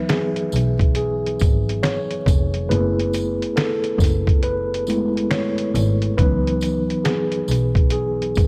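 Vinyl crackle and light reverb frame this melancholic, hazy lo-fi hip hop excerpt, where a mellow tine electric piano with cassette-tape coloring carries a solo from the start over C#m11 and F#m11 chords, joined at 0.1 seconds by an up-front, gritty sampler-style drum kit with a thumpy kick, fat snare, hi-hat and finger snaps in a swung groove, and at 0.5 seconds by a close, bowed double bass with biting vibrato and a jingly, close acoustic tambourine sitting low in the mix.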